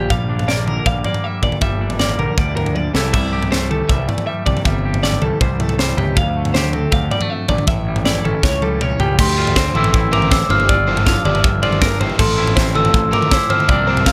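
Crisp fusion drums with a high-tuned snare and punchy kick sit up front in this intricate, restless math rock and midwest emo piece at 159 BPM, driving a bright twelve-string guitar's arpeggios, a clean, fingered twangy guitar accompaniment and a fuzzy, overdriven picked bass through shifting chords like Dm9 and A7, with drum fills at 2.8 and 8.4 seconds, until at 9.2 seconds a mellow, bell-like glockenspiel melody joins and, moments later, a double-tracked crunchy guitar riff adds grit in the background, all under light reverb.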